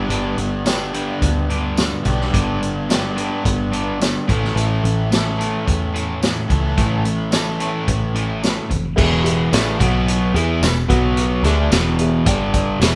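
Two crunchy overdriven electric guitars open this sunny, driving classic rock passage at a steady 108 BPM in straight 4/4, playing picked riffs over G and then A. One guitar is bright, while the other sits up front with a warmer tone. Beneath them, an overdriven picked electric bass gives a dark, round, foam-muted sound heard direct. A vintage acoustic drum kit joins almost at once, mid-forward and up front, with a punchy kick, a medium-tuned snare, hi-hat, crash, tambourine, dark cymbals and a warm, rolled-off top. At 9.0 seconds the harmony moves to E, alternating with B5 before landing on G5, as a mellow, woody upright piano enters in the background with a smooth vintage character. The band sounds as if it is playing live in one room with moderate studio reverb, and the passage is cut from a longer piece.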